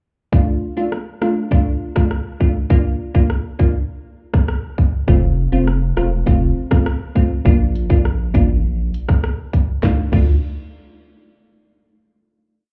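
Dancehall with a hypnotic, bouncy mood, where an electronic drum kit with a tight kick, sharp snare, dark hats and rim clicks lays down a sparse beat under crisp, warbling, detuned wavetable chord stabs moving through D minor, B-flat and F, joined at 5.1 seconds by a thick, saturated sub bass playing syncopated low lines, all heard muffled as if through a wall in a club reverb before settling on a final chord.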